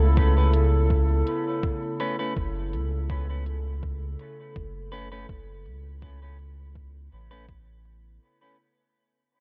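Deep and spacious, this fading ambient dub fragment lays a warbling, nostalgic lo-fi pad with chorus and its own reverb over a round, up-front sub bass, while electronic drums carry a filter sweep: a sampler-style, thumpy, muffled, pitched-down kick and crisp hats set in the background through a low-pass filter and dub echo. From 2.0 s a clean, picked electric guitar adds filtered, echoing stabs, the whole mix sitting in light reverb.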